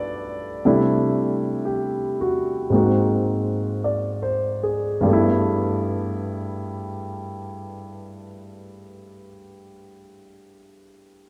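A lush concert-hall reverb with a long 2.4-second decay surrounds this short fragment of a jazz ballad, performed by a solo concert grand piano that sits up front in the sound. The piano's tone is natural and warm, with a deep bass, and it ranges from G2 up to D5. The mood is intimate and tender, in G major and 4/4 with a gentle swing on the eighth notes, at a slow tempo between 46 and 62 BPM that slows down through the first 5.0 seconds. The harmony moves from G6 to C69 and then to Ab7, before settling back on G6 at 5.0 seconds as a new section begins. The piano plays alone throughout, and the passage ends at 11.3 seconds.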